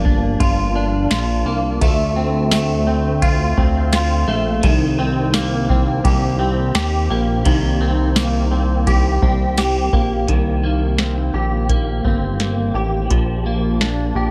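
A soft vintage rhythm box sets a straight 85 BPM pulse in 4/4, its deep kick, crisp snare, metallic hi-hat, ride cymbal and tambourine sounding dry and tape-toned up front, beneath a chorused synth bass that is glossy and nasal, with a plucky filtered attack and sustained pulse-wave and sawtooth tones. In this ethereal, floating dream pop fragment, cut from a longer piece, a clean, compressed electric guitar plays picked arpeggios through ensemble chorus and tape echo, moving over Gm7, Dm7 and Cm7 harmonies. The mix sits in light reverb and digital ambience, with a new section arriving at 10.3 seconds and a Gm7/Bb chord at 13.1 seconds.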